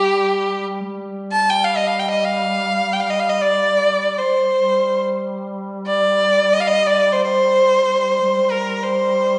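In free time, this hypnotic, soulful Turkish makam ensemble passage in G makam ussak, a brief excerpt from a longer piece, sets a rich, smooth, even violin melody, bowed by one player up front with vibrato and a slapback echo, over a mellow, soft-attack duduk drone on G3 with folk-style scooped notes and vibrato, all captured from further back in a reverberant recital hall with a subdued, rounded top end.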